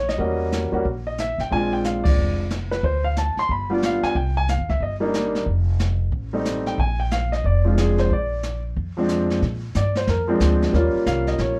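Relaxed and easygoing, this short jazz piano trio cut swings briskly at 182 BPM in 4/4, centered in Bb mixolydian. A baby grand piano carries the melody up front with a natural, long-sustaining tone, ranging from F3 to C6, while a pizzicato upright bass sits close by with a woody, thumpy low end between F1 and Bb2. A brushed drum kit enters at 0.1 seconds, lower in the mix, with dark cymbals, a medium-tuned snare and a boomy kick recorded naturally in a small room. The band lands a shared accent at 2.0 seconds, and the harmony moves through colorful dominant, minor and diminished chords such as Edim7, G7, Cm7 and F9, closing on Eb9 near 10.7 seconds. The whole trio sits in a moderate club ambience, with the worn, warbling character of old cassette tape adding a warbly pitch drift to the sound.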